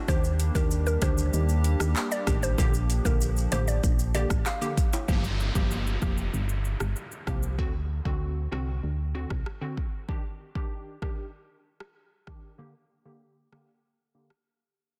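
Sultry and bouncy, this dancehall excerpt in G minor moves at 96 BPM over a straight 4/4, its afro-pop drum kit of deep kick, metallic hats, handclaps, rim click and shaker sitting up front beside a punchy, round FM bass, while a crisp, detuned wavetable chord stab with phaser and sidechain pumping carries chords from Ebmaj7 through Bb6, Gm7 and D7. Over the opening section a woody, warbling mallet-like pluck with tape echo plays the melody above a hollow, flute-like pad, and acoustic maracas and timbales add small-room colour, all dropping out by 5.1 seconds. From there a downlifter enters, the stab's filter sweeps and the track fades out, the bass stopping at 9.4 seconds before a brief break at 14.5 seconds in a dry, dense, heavily limited mix.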